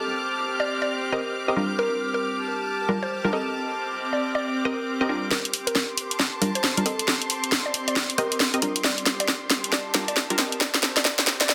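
Set in a wet digital room and a dense, heavily limited modern master, this bouncy, moody two-step UK garage excerpt in G minor swings at 136 BPM, as a punchy, bright chord stab with 12-bit sampler grit and dub echo and a woody, round mallet-like synth pluck with chorus, phaser and echo carry the hook. A silky string machine pumps softly in the background beneath an earthy, lightly vibrato chamber string section over Gm7. At 5.3 s a build-up begins: an up-front garage kit with a cracking snare, hi-hat and rim click arrives with a tight background kick and a drum fill, filter sweeps run across the stab and pluck, and the harmony moves to Cm7 at 10.6 s.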